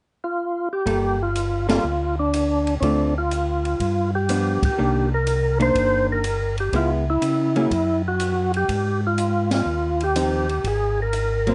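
Soul jazz organ trio music with a smoky, soulful mood, swinging in 4/4 and cut from a longer piece. A percussive tonewheel organ carries the melody from 0.2 seconds, its lightly overdriven, full tone colored by second harmonic percussion, chorus vibrato and a slow rotary speaker, sitting up front. At 0.9 seconds the rest of the band enters: a clean, picked hollow-body electric guitar comping with a dark, compressed sound, a second tonewheel organ holding down the bass with a mellow, round voice through its own chorus vibrato and slow rotary, and an acoustic drum kit with dark cymbals, a high-tuned snare and a boomy kick, heard on hi-hat, ride, snare and kick. The band hits accents together at 1.6, 4.5 and 9.4 seconds over minor ninth and seventh chords, a brief pause in the harmony, and a closing move to Ab6 and Absus2. A small room gives the trio moderate reverb, and the top end is rolled off above 10.5 kHz.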